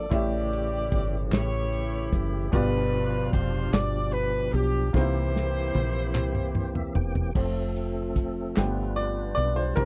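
A slow 6/8 gospel groove at 50 BPM carries this jubilant, reverent excerpt, where an up-front saxophone section sings the vibrato-laced melody until 6.9 s over clear, short-sustained baby grand piano, a fat, lightly overdriven tonewheel organ with chorus vibrato and slow rotary speaker, a round, punchy dub-style fingered bass, a dark, dry soul drum kit, and crisp group handclaps, before a drum fill and organ fill lead at 7.4 s into a piano solo cushioned by a very quiet, mellow French horn section, all captured in a dry, close 1970s-style studio sound.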